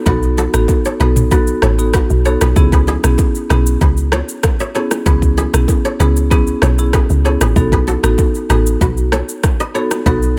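This short cut from a longer afrobeats track opens with the whole groove sounding at once over a B7 chord: a deep, round log drum bass with a fast attack and dark decay sits up front, joined by an electronic afro-pop kit with a deep kick, rim clicks, shaker and toms. A marimba played with medium mallets carries the accompaniment in a warm middle register, also close and present. Above it, a bright acoustic kora plays a fingerpicked, ringing riff whose crisp notes trail off through a delay. Congas and bongos, struck with hard hands, add a very quiet layer of acoustic percussion deep in the small-room ambience. The harmony moves to C#m7 at 2.6 seconds and returns to B7 at 7.6 seconds, keeping the hypnotic, sultry mood steady through the passage.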